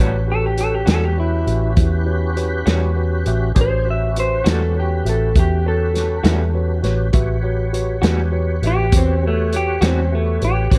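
Laid-back and soulful, this slow blues in 12/8 rests on a muffled vintage drum kit with a punchy kick and a round, foam-muted fingered bass, both up front. A picked guitar through a small old amp, slightly broken-up and compressed, carries the solo melody from 0.3 s, while a second lo-fi guitar plays tremolo-treated accompaniment until 10.0 s. A clean tine electric piano and a lightly overdriven tonewheel organ, with slow rotary speaker and chorus vibrato, fill out the dark, warm mix over an A13 chord, with plate reverb on the guitars, piano and organ.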